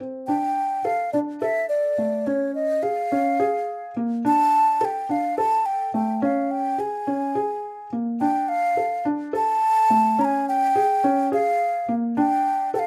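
Contemporary chamber music in a restless yet hopeful 7/8, this short passage from a longer piece opens with a felt-muted upright piano playing dark, intimate arpeggios where the thick felt and audible action noise sit up front, joined at 0.3 s by an airy, hollow wooden flute carrying the melody with a crisp attack and straight tone, all in light reverb over chords moving through A7sus4, Db, Dm and a rootless F69.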